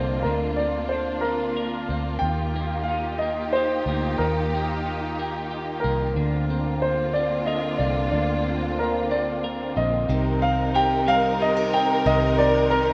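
A rough home-demo sound bathed in a lush hall reverb frames this heartfelt, romantic six-eight pop ballad excerpt in Eb major at 61 BPM, where a present, polished grand piano carries the melody over bright, twangy twelve-string electric guitar, smooth, vibrato-rich bowed strings holding chords up front, and a round, punchy foam-muted electric bass, while a fresh-stringed picked steel-string acoustic guitar slips in with background arpeggios at 10.1 seconds as the harmony turns from Bbadd9 and Ebadd9 to Cm7.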